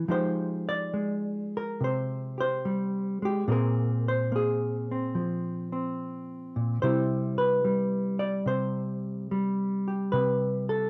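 Sophisticated and playful, this short solo jazz passage, cut from a longer piece, moves at a loose, rubato 72 BPM with a gentle swing as a dark, clean, fingered hollow-body electric guitar sits up front, ranging from Bb2 to D5 through Fm9, Bbsus2 and Cmaj7 chords, captured by close, detailed microphones in light reverb.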